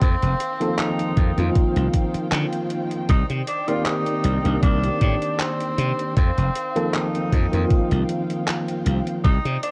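A thumpy electronic kick drum, re-recorded in a small room and placed up front, anchors this woozy, melancholic vaporwave fragment at 78 BPM in 4/4, with a gentle 16th-note swing. A bright, growly slap bass with a glassy, punchy edge sits just as close. A detuned 8-bit drum machine adds handclaps and hi-hat, and a dark, woody string section holds lush bowed chords played sul tasto with vibrato, roughened by vintage 12-bit sampler grit. Over this, a distant, roomy tenor saxophone carries a jazz-style solo melody with light vibrato and scooped notes, trailed by tape echo. From 0.6 seconds a worn, slightly out-of-tune tine electric piano joins up front, lightly overdriven through built-in speakers with subtle chorus and tape echo. The harmony moves from F7sus4 to Cm9 and back, and the whole piece sounds dry and wobbly, like a worn cassette with warbly pitch drift.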